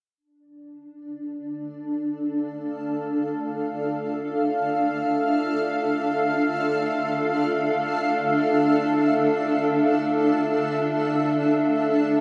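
In free time, this serene, melancholic ambient fragment rests on a single granular cloud pad that enters at 1.1 seconds and plays alone, up front, with slow-attack, sustained tones spanning D4 to G5 over one minor chord. The pad's cloudy, blurred and detuned sine timbre is full-bodied and evolving, thickened by subtle chorus and tape echo on top of its own built-in reverb. A wet cathedral reverb with a 4.9-second decay soaks the whole dreamy mix.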